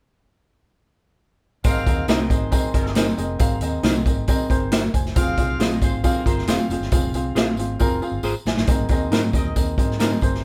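An up-front big-band drum kit drives this danceable 1960s-style soul excerpt, its boomy kick, medium-tuned snare and hi-hat sounding natural in a studio room from 1.6 seconds, with a drum fill at 7.8 seconds leading into a new section. Beneath it, a vintage foam-muted fingered electric bass plays a dark, round and punchy line, while a woody, slightly detuned upright piano fills in the accompaniment. A mellow, clean electric guitar adds fingered stabs in the background from 2.1 seconds, and a jingly, compressed and saturated tambourine rides quietly behind the band. A distant, roomy horn section in jazz style plays a second line with light vibrato, giving a warm ensemble glow. With light reverb, the whole thing feels like a band playing live together in one room, and the harmony shifts from a minor chord to an added-ninth chord at 8.7 seconds.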